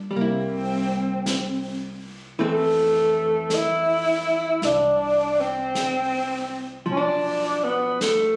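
A breathy tenor saxophone carries the melody up front in this tender, romantic jazz ballad excerpt in F major, its subtone voice shaded with vibrato, soft attacks and scooped notes and set in plate reverb from 0.2 seconds. Beneath it, a dark, clean hollow-body archtop guitar picks compressed chords from C7 through Fmaj7 to Bdim, a woody pizzicato upright bass sits in the background, and a vintage kit played with brushes keeps a slow 53 BPM swing on snare and hi-hat. The whole performance has the intimate feel of a moderate studio room captured on a phone.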